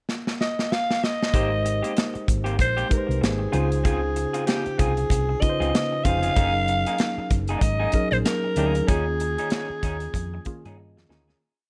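A raspy, gritty alto saxophone with light vibrato and scooped notes carries this romantic, smooth 1970s-style soul piece in Ab major at 95 BPM, stating motif-based call phrases up front over a drum kit that opens with a fill at 0.1 seconds and settles into a swung mid-tempo groove with a tight kick and medium-tuned snare. At 1.3 seconds the rest of the band joins: a round, dark hollow-body bass with muted ghost notes and chromatic approach notes, a worn, slightly out-of-tune tine electric piano that is lightly overdriven and plays pushed, spread chords with grace notes and short fills, and a lo-fi, slightly broken-up electric guitar fingering a soft sixteenth-note rhythm. Studio reverb adds space as the chords move from Abmaj9 through Dbmaj7 and Gb69 to Eb7sus4, and the piece fades out from 8.9 seconds under a last drum fill and electric piano fill.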